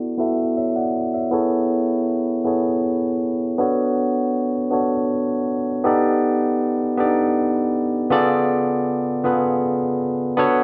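In 6/8 with a straight feel, this tender, warm R&B fragment from a longer piece features a solo tine electric piano, barky and lightly overdriven through a combo amp and placed up front, moving from E9sus4 and Amaj9 to Bm9 and B7alt under a filter sweep before a new passage arrives at 8.1 s on C#7b9b13, the whole bathed in a large studio's wet reverb and softened by a low-pass filter.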